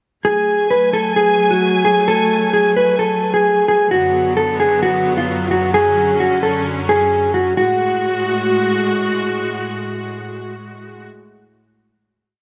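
A mellow electric guitar leads this brooding, melancholic hip hop and trap piece, its dark, clean, fingered melody repeating like a sampled loop, up front and compressed with a tape echo trailing each phrase. Alongside it, a symphonic string section holds sustained chords as a bowed ensemble pad, clear and biting with light vibrato and an intense edge. The tempo sits at 131 BPM in 4/4 with a half-time feel, in F# minor, moving from F#madd9 through Bm/F# and Dmaj7/F# before returning home. The breakdown runs until 7.6 seconds, when the final chord arrives; the guitar stops at 8.9 seconds, and the strings carry that chord alone until 11.1 seconds. A moderate scoring-stage reverb gives the whole short piece a spacious air.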